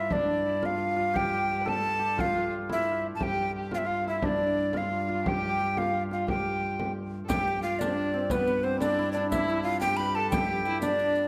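A mellow, hollow tenor recorder carries the melody up front in this rustic, festive medieval dance, its airy, tongued tone marked by a distinct chiff. The dance is in G mixolydian and 6/8, starting at 118 BPM in dotted quarters and speeding up as it goes. Beneath the recorder, a distant fiddle bowed sul tasto and a shimmering hammered dulcimer play second lines, while a dark, fretted viola da gamba holds a smooth, ringing drone on G2. A deep frame drum played with soft hands keeps the pulse, and a riq with dark jingles joins quietly in the background when the second section begins at 7.3 seconds. The close, detailed microphones sit in a moderate recital-hall reverb, and the excerpt is cut from a longer piece.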